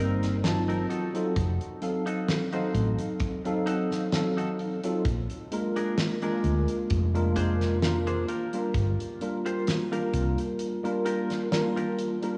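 Vaporwave excerpt at a slow, lightly swung 65 BPM in 4/4, hazy and melancholic, where an up-front tine electric piano through a combo amp carries the Cm7–F7b9–Bb7–Gm7 changes with ensemble chorus and tape echo; a clean, compressed semi-hollow guitar riff sits underneath in lush chorus, 12-bit sampler grit and tape echo; a dark, round hollow-body bass plays up front with tube saturation until 10.3 s; and a big-room rock kit supplies a fat, rolled-off snare and hi-hat alongside a punchy kick that drops out at 10.6 s, the whole mix bathed in a long plate reverb and the rough cassette-tape character of a home demo.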